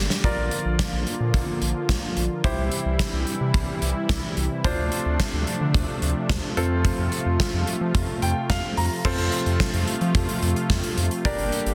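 A gated 80s drum kit sits up front with bright cymbals, a tight kick and a medium-tuned snare ringing in a stone-room gate, opening with a fill and driving this melancholic, nocturnal synth-pop excerpt at 109 BPM in straight 4/4 through Bb, C, Dm7 and F. A brassy, detuned sawtooth pad with chorus and vibrato holds bold sustained chords, a round analog bass adds deep, dark sine-like weight, and a brilliant concert grand piano with short sustain plays accompaniment, stepping out with a fill from 7.9 to 9.0 seconds before a new section begins. Light studio reverb frames a dense, heavily limited modern master.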